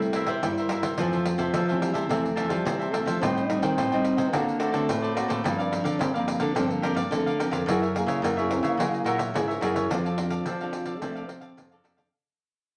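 A breathy, dark trombone carries the melody in a soft-attacked, whispered jazz style with light vibrato, sounding distant and roomy yet intimate. This is a lively, festive samba and choro piece in F major at 108 BPM in a straight 4/4, cut from a longer performance. A bright, crisp picked cavaquinho and a fingerpicked nylon-string guitar, small-sounding with audible finger squeak, share the accompaniment. A second nylon-string guitar, full-bodied and classical in tone, fingerpicks the bass line. A jingly pandeiro played with hard hands sits close and dry. The harmony moves through C7, Fmaj7, Am7b5, D7b13, Gm7 and Gb9 before settling on F6 as the music fades out from 9.9 seconds, with the trombone stopping at 11.8 seconds, all set in a wet studio reverb.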